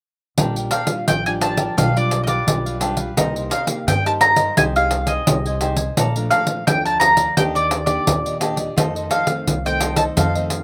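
Samba and choro in a playful, sunny mood, built on a straight 4/4 with a jingly, compressed, saturated pandeiro sitting up front alongside a woody, dark upright bass played pizzicato on steel strings. A crisp picked cavaquinho and a fingerpicked classical nylon-string guitar, where finger squeak can be heard, share the accompaniment from 0.4 seconds, both carrying a slapback echo, while a round, double-strung mandolin takes the melody up front from 0.7 seconds. The short cut from a longer piece moves through chords from Bb6 to F7, recorded outdoors with little reverb and a dry sound.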